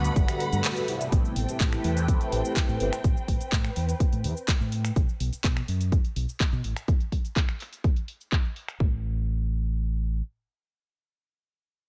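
Filtered disco house at 125 BPM in A dorian, this short, nostalgic and groovy cut opens on a drop where mellow, detuned synth brass and a lush, dark violin section with expressive portamento pump against the punchy electronic kick, which enters at 0.2 seconds, over a Gmaj7 chord. The brass drops out at 2.9 seconds and the violins at 4.9 seconds, leaving the round, up-front fingered bass to carry a long filter sweep over Am7, then B5, while the house kit adds snaps, claps, a shaker and warm hats. After the kit stops at 8.8 seconds and the kick at 8.9 seconds, the bass plays alone until 10.2 seconds in a dry sound with little reverb.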